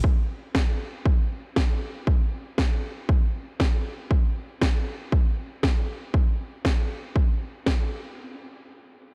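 A punchy, overdriven electronic kick sits up front from the first beat of this sleek, groovy nu-disco fragment in straight 4/4, joined at 0.5 s by a cracking, layered electronic snare that is also overdriven, both drums carrying the character of a large room while the overall sound stays fairly dry.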